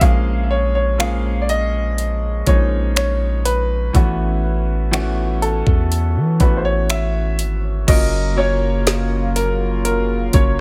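Romantic and dreamy, this contemporary R&B excerpt is cut from a longer piece and moves at a slow, straight 4/4 pace. A clear grand piano carries the melody, its line touched with tape echo, while a baby grand piano supports it with accompaniment through A#m7 and A69. Beneath them, a deep, mellow 808-style bass with a sine tone, a fast attack and a decaying sustain sits up front. A produced trap kit also sits forward in the mix, with a knocking kick, woody snare, metallic hi-hats, finger snaps and crash cymbal. At 7.9 s the harmony settles onto F#maj7 as a shimmering, retro pulse-width pad enters with soft-attack sustained chords and bright chorus, all set in a digital ambience.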